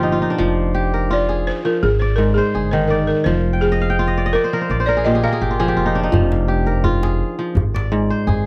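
A straight 4/4 pulse at 84 BPM carries this hypnotic, reflective stretch of West African string and xylophone music in F dorian, tuned to A4 = 437 Hz. Up front, a fingerpicked acoustic kora spins ringing, crisp arpeggios through the passage, adding fills as the harmony moves between Fm and Ab. Beneath it, a pizzicato upright bass with gut strings gives a dark, thumpy low end. A balafon played with rubber mallets carries the melody from 1.1 s to 7.0 s, its tone woody, buzzing and airy. At 6.1 s a tight, cracking djembe enters in the background with a live room sound, and the recording has the dry, close feel of a 1970s-style studio.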